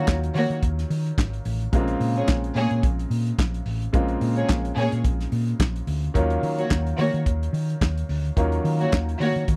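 Disco in Bb minor at 108 BPM with a lightly swung sixteenth-note feel, this short excerpt cut from a longer piece carries a glamorous, sultry mood. A dark, lush studio string section sits up front as the second line, its bowed, woody ensemble tone shaded by vibrato and sul tasto playing from the very start. A hollow-body short-scale electric bass, fingered and amped, gives a round, dusky low end from 0.1 seconds, while a soul drum kit of kick, snare, hi-hat and handclaps sounds dry and tight, with a medium-tuned snare and a pumping room feel. Beneath them, a clear baby grand piano offers intimate, natural accompaniment, its action noise audible. The harmony moves from Ebm7 to Bbm7 at 1.7 seconds and back to Ebm7 at 6.2 seconds, all in a close, nearly reverb-free sound.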